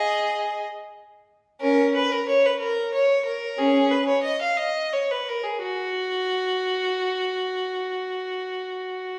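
Flowing and solemn, this baroque-style suite movement for unaccompanied violin moves in a rubato 12/8 at 56-62 BPM in dotted quarters, set in F# major and tuned to A4 = 442 Hz. A single bowed violin with a rich, focused tone and vibrato carries the line alone from 0.0 to 9.2 s, ranging from C#4 to E#5. The recital hall's wet reverb, with a 1.4 s decay, places the listener further back in the room, and the passage is cut from a longer piece.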